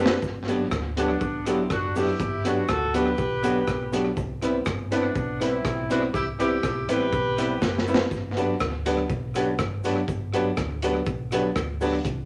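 A wet, roomy studio reverb surrounds this upbeat, cheerful ska excerpt, where a gritty, saturated breakbeat drum kit with tape echo sits up front over a round hollow-body electric bass and a clean, picked archtop guitar. A woody upright piano with audible action noise plays stabs over Gmaj7 and Cmaj7 chords, while a grainy cabasa sits in the background. From 1.0 to 7.9 seconds a punchy horn section with light vibrato carries the melody, and a drum fill at 7.6 seconds comes just before the return to Gmaj7.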